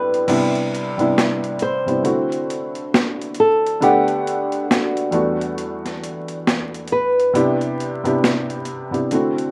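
Nostalgic and cosy, this lo-fi hip hop fragment moves at a relaxed, swung 68 BPM, with a thumb-plucked flamenco guitar melody, its fresh strings softened by a low-pass filter and analog delay, that ends at 7.4 s over a mellow, felt-muted upright piano whose audible action noise sits up front through chords moving from Cmaj7 through D7, Gmaj7/D and Em11 back to Cmaj7, while a gritty, pitched-down boom bap kit with a high-tuned overdriven snare, hi-hat and crash plays with its kick muted, all in a rough home-demo mix with light reverb and vinyl crackle.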